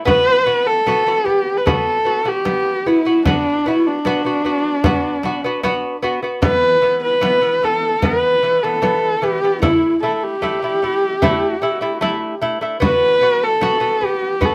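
Closely miked with light reverb, this proud, vast Mongolian folk excerpt at 75 BPM in 4/4 sets a warm, nasal, husky horsehead fiddle up front, singing the melody with vibrato and portamento, over delicate, bright fingerpicked lute arpeggios on double gut strings and a deep frame drum played with hard hands, moving through B5, E5, A5 and back to B5.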